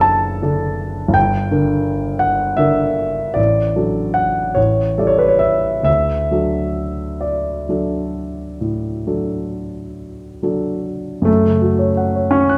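A warm concert grand piano, up front with deep bass and short sustain, carries this dreamy, tender romantic nocturne in a rubato 12/8 sway, its harmony drifting from D/F# through G minor and back home to D before turning toward F-sharp minor near 11.3 seconds, all bathed in moderate recital hall reverb in this brief cut from a longer piece.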